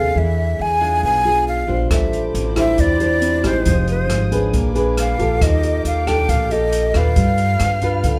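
A straight 4/4 bossa nova groove at 137 BPM sets a breezy, romantic mood, carried by woody, thumpy pizzicato upright bass and fingerpicked, full-bodied nylon-string guitar, with an airy jazz drum kit of hi-hat, rim click and boomy kick joining at 1.9 s. Up front, a breathy, hollow flute sings the melody with vibrato over chords moving from E7b9 through Am11, Fm9 and Ebmaj9#11 to G7, while a mellow tine electric piano sits in the background until 7.2 s. Veiled, muted violins bowed con sordino add soft sustained chords from 1.9 s, and the whole band sounds live in one room with moderate large-studio reverb, in this short cut from a longer piece.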